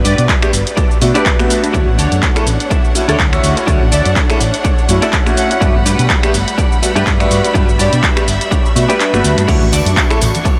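Joyful and feel-good, this filtered disco house excerpt at 124 BPM in D major swings over Gmaj7 and Dmaj7 chords, with a punchy, up-front electronic kick (dropping out briefly at 9.0 seconds), a dry analog drum machine of crash, finger snaps, handclaps, hi-hat and shaker, a dark, round hollow-body bass, a twangy chorused twelve-string electric guitar riff, brilliant phased baby grand piano accompaniment with audible action noise, lush bowed symphonic strings in the background, a very quiet, nasal detuned synth brass melody, and tambourine and congas arriving only at 9.5 seconds, most parts pumping against the kick inside a dreamy, reverb-soaked mix.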